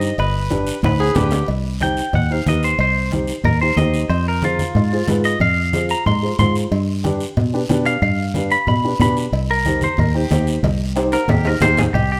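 A twangy, up-front clean electric guitar with spring reverb opens this driving, fiery cumbia fragment alongside a woody upright piano, a round fingered electric bass and a raspy guiro, soon joined by ringing cowbell and timbales and thin-skinned congas in the background, while a breathy tenor saxophone slips in briefly at 1.0 seconds and a drum fill leads into the guitar's bright solo from 1.5 to 11.9 seconds over Cm, Fm and G7.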